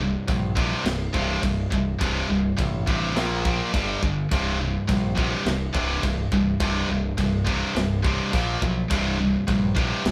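A pair of searing, high-gain distorted guitars sit up front, picking a heavy metal riff through C5, Bb5 and G5 power chords at 104 BPM in a straight 4/4, with an epic, aggressive mood. A growling, punchy overdriven bass holds down the low end from the start, and a tight acoustic drum kit with a medium-tuned snare, firm kick, china cymbal and a mellow, rolled-off top joins at 0.3 seconds. The short excerpt sounds like a band playing live in one room with light reverb.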